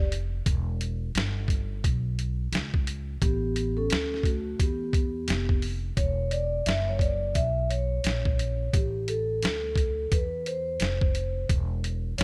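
Jazz-hop at 87 BPM in E dorian, mellow and nocturnal, with a swung 16th-note feel, where a ringing, metallic vibraphone played with soft mallets and its motor off carries solo lines through this dry excerpt over a woody, pizzicato upright bass with a thumpy low end and a gritty, compressed, pitched-down boom bap sampler kit of thumpy kick, medium-tuned snare and hi-hat, with all three parts up front and the harmony moving from Em6 through A9sus4 and Fsus2 before a fresh phrase at 6.0 seconds runs through Esus2 and Asus4 to F5 and then drops away from chords.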